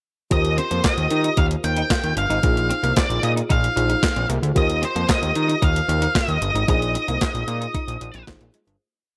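Early-eighties boogie funk with a feel-good, smooth mood, this short complete piece rides a straight four-on-the-floor beat from a crisp 8-bit digital drum machine that has a sampler-style, tape-tinged character, a thumpy kick, a medium-tuned snare layered with handclaps, hi-hat, and gated reverb. A fat analog bass sits up front with a thick, saturated, detuned sawtooth-and-square tone and a quick filter pluck, driving a syncopated boogie line. Over this, an octave-fuzz lead guitar plays a dark, distorted, picked motif-based melody built from call phrases, dropping out at 8.2 seconds. In the background, a mellow FM electric piano with chorus holds soft, round, warbling rootless chords, while a clean electric guitar with analog chorus picks a muted single-note line. The harmony moves between Eb69 and Bb7sus4 in a single verse that begins at 0.3 seconds, the mix stays dry and close, and a fade-out starts at 6.7 seconds.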